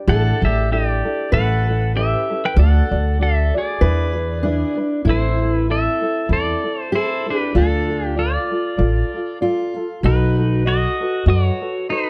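This Hawaiian piece, cut from a longer performance, drifts at 97 BPM in 4/4 with a gentle swing on the eighth notes, and its mood is dreamy and languid. The pedal steel guitar carries the melody up front, electric and twangy with a bright, clean, compressed tone, played with fingerpicks, slide and volume swells. Beneath it, a fingerpicked steel-string acoustic guitar adds a second line with an auditorium-sized body, audible finger squeak and digital delay, while a mellow, thumb-plucked tenor ukulele lightly fills in the accompaniment. The upright bass also sits prominently, plucked pizzicato on gut strings for a woody, thumpy low end. The harmony moves through A7sus4, A7, D and E7 before turning to A minor at 5.1 s with Amadd9, Dm and B7, all framed by light reverb in a dark, warm production.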